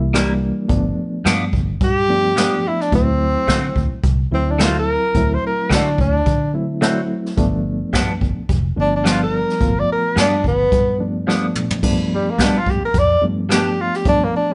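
Straight-eighth soul blues in G mixolydian at 108 BPM, this swaggering, soulful passage is cut from a longer piece. A reedy electric piano with fast tremolo, a dark, round, foam-muted electric bass and a brush kit with dark cymbals and a boomy kick set the groove, while a bright, twangy clean guitar adds phaser-coloured stabs. A breathy tenor saxophone enters up front at 1.8 s with subtone, light vibrato and scooped notes, and after a drum fill at 11.3 s it moves into a solo at 11.8 s, all in a live-room sound with light reverb.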